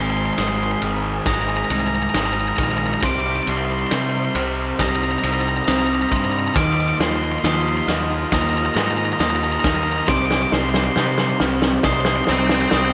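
In a straight 4/4 pulse, this brooding, cathartic post-rock build-up sees a gritty, punchy loose indie drum kit come in up front at 0.4 s with a fill of kick, snare and ride. It sits over a fuzz picked electric bass, a crunchy overdriven guitar riff and a clean, hollow-toned semi-hollow electric guitar arpeggiating very quietly beneath. A dark octave-fuzz lead guitar with tape echo carries the melody above a lush, bowed string section and a sparkling glockenspiel with brass mallets in the background, moving through Abadd9, Cm and Ebsus2 in a large studio reverb.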